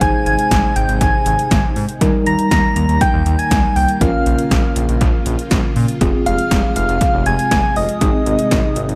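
Synth-pop with a driving, nocturnal mood, this echo-heavy, dry excerpt sets a round, gentle FM lead up front over a worn, slightly out-of-tune tine electric piano with fast tremolo and light overdrive, mellow string-machine cellos in the background, a smooth detuned synth bass, and punchy overdriven 80s electronic pad drums with a gated snare and metallic hats, moving through Ab, Eb, Bbm and Fm.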